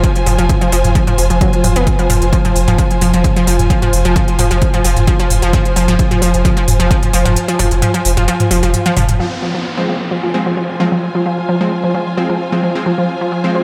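An up-front, detuned sawtooth unison pluck with wave-folded, ring-modulated bite, tube saturation and analog delay leads this dark, industrial peak-time techno in F minor at 131 BPM, sidechain-pumping alongside a deep saturated sub bass and a bowed, woody string section with vibrato, over a punchy overdriven analog kick and a layered kit of smooth hats and toms. The kick drops out at 7.4 seconds before a short drum fill, and from 9.2 seconds a downlifter enters as the drums take on a filter sweep and full-bodied supersaw stabs arrive, later joined by a very quiet, swarming granular drone. Lush hall reverb soaks the dreamy mix.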